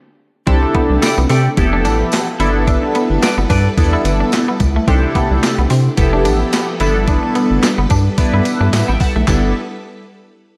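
A dreamy mix soaked in plate reverb carries this smooth, danceable early-eighties boogie funk excerpt, which opens after half a second of silence with a crisp, thumpy 8-bit drum machine with handclaps, a rubbery, hollow square bass up front, and a glossy chorused polysynth with phaser holding the chords. Shimmering string-machine violins sustain beneath a slightly broken-up, twangy electric guitar riff, while a jingly tambourine enters in the background at 1.0 seconds. A clear, vintage horn section adds a light-vibrato second line through tape echo until 3.7 seconds.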